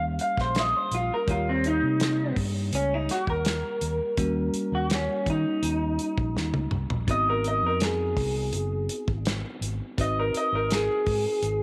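Over a straight-eighth groove at 83 BPM in 4/4, this short soul blues excerpt in Eb mixolydian rolls along with a rollicking yet laid-back mood, moving from Eb7#9 to Ab7#9 at 7.1 seconds. Up front, an electric guitar through a small old amp carries a clean solo, bright, twangy and slightly broken-up with a lo-fi edge, while a mid-forward soul drum kit with a tight kick, a medium-tuned snare and a rolled-off top drops in a fill from 6.4 seconds. A round, amped fingered bass anchors the low end, a bell-like tine electric piano chimes clean in the background, and a wet spring reverb hangs over the small-room sound.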